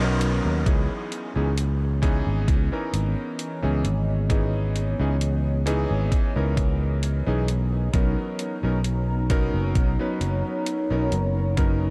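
A growly, up-front fretless electric bass anchors this woozy, dreamy vaporwave excerpt, sustaining low notes beneath a slow 66 BPM groove in 4/4 with a light swing on the sixteenths. A bright, clangy electric grand piano plays accompaniment from the opening accent, its short, vintage tone colored by subtle chorus and analog delay. At 1.9 seconds a detuned, lo-fi pad drifts in with a slow attack, its sawtooth and triangle layers warbling nostalgically through chorus and its own reverb. A thumpy, tape-warm electronic kick and a quiet sampler-style hi-hat, both re-recorded in a small room, keep a hazy pulse. The harmony moves from Bmaj9 to C#m9 and returns to Bmaj9 at 7.5 seconds, all of it soaked in a huge ambient reverb that gives the mix its dreamlike blur.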